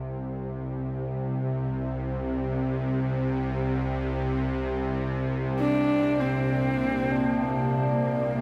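A dark horsehead fiddle enters at 5.6 seconds with a husky, boxy voice, its intimate bowed melody gliding with vibrato and an airy bow over a tense, nasal bowed-like drone that sustains low throughout this short cut from a longer dark ambient piece in free time. Solemn tubular bells ring metallic arpeggios through a diffuse delay, and at 5.8 seconds a deep, mellow pad with chorus settles in the background as the harmony moves from C5 to Bb/C. A huge, cavernous reverb surrounds it all, giving the ominous drone a vast, shadowy space.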